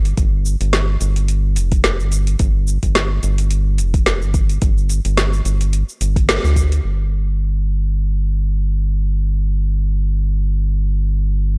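Organic downtempo at 108 BPM with a light 16th-note swing and a hypnotic, warm mood, this fragment of a longer piece pairs a round, dark analog bass with a fast plucked attack and sidechain pumping against an overdriven afro-pop kit of cabasa, metallic hi-hat and woody snare, re-recorded in a small room, all over a deep, layered electronic kick; after a band accent at 6.3 seconds the drums stop at 6.8 seconds, leaving the up-front bass alone until 11.6 seconds in a dry, gritty hardware sound.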